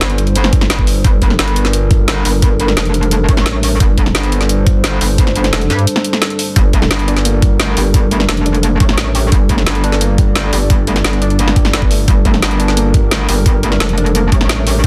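Dark technical drum and bass at 174 BPM in G minor, this mechanical, tense fragment of a longer piece sits on a single G minor chord, with a detuned, wave-folded analog pad holding sustained chords under sidechain pumping. An aggressive, metallic wobble bass with overdrive and chorus stands up front beside a produced drum kit of woody snare and bright hats, while an overdriven, knocking electronic kick enters at 0.5 seconds. At 6.6 seconds a soft, round pluck adds mellow arpeggios in the background through chorus and delay, all within a dense, heavily limited master with light reverb and a faint mains hum.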